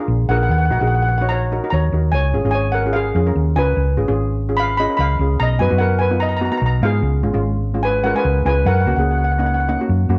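A worn, warbling cassette sound with warbly pitch drift colors this carefree, festive calypso fragment, set in a snug small room. At 147 BPM in 4/4 with a light swing on the sixteenths, a shimmering lead steel pan carries the melody up front, its metallic tone struck with hard rubber sticks and bathed in plate reverb. Beneath it, cello pans supply darker, smooth accompaniment in the lower register. A round, amped hollow-body electric bass, fingered and placed up front, enters at 0.1 seconds and anchors the low end. The harmony moves from D#m7 through C#7 and Bmaj7 before settling on F#6 near 8.7 seconds, with the melody pan stopping at 9.8 seconds.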